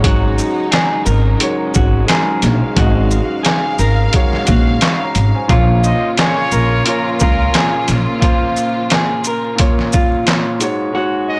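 A blown-out, overdriven mix with light studio reverb carries this moody, gritty boom-bap hip-hop fragment, where a compressed, pitched-down sampler-style drum kit with a thumpy kick, handclaps and shaker sits up front beside a woody pizzicato upright bass that drops out at 8.0 s, while a mellow, cassette-toned baby grand piano and lush bowed strings hold the harmony beneath a dark, clean fingered electric guitar melody with tape echo, joined at 5.8 s by warm trumpet-section stabs with light vibrato.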